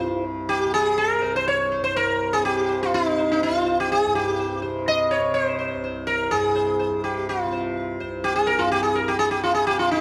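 The sitar leads this meditative Indian classical excerpt, its plectrum-plucked melody sitting up front with a round, buzzing tone and a shimmer from its sympathetic strings as it moves between Eb4 and Eb5. Beneath it, a softly plucked tanpura sustains a low drone from C2 to C3, set well back in the balance, its own buzz and shimmer forming a warm bed. The music is in raga Bhairavi on C, with a tuning reference of A4 = 436 Hz, and moves at 124 BPM in a straight 4/4 feel. Both instruments play throughout the 10-second clip, cut from a longer performance. A moderate recital hall reverb with a 1.5-second decay gives the pair a sense of space, and the mood is one of longing.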